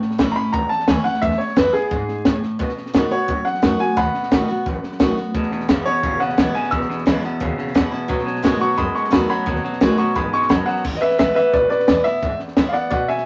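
Rockabilly at a brisk 174 BPM in E major, this rollicking, retro excerpt puts a brilliant upright piano up front on the melody, its action noise audible and its long sustain ringing over a picked dreadnought acoustic guitar with fresh strings, a thumpy pizzicato upright bass in the background, and a compact cocktail kit with a high-tuned snare and tight kick. A clean, twangy electric guitar riff enters at 5.3 s and drops out at 10.8 s, as the changes move among A, E and B7. A moderate club reverb and vinyl crackle with a dulled top end give the sound its vintage patina.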